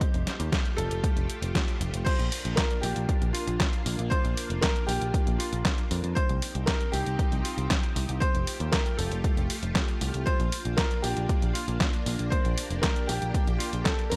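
A dry, gritty hardware recording carries this sunny, playful italo disco excerpt at 117 BPM in Bb major, where a brilliant grand piano melody with analog delay rides over lush, chorused string-machine chords that open with a filter sweep until 2.1 seconds, a punchy overdriven electronic kick, a detuned 8-bit drum machine with handclaps, hi-hat, crash and a tape-tinged snare, and a dark, round picked electric bass.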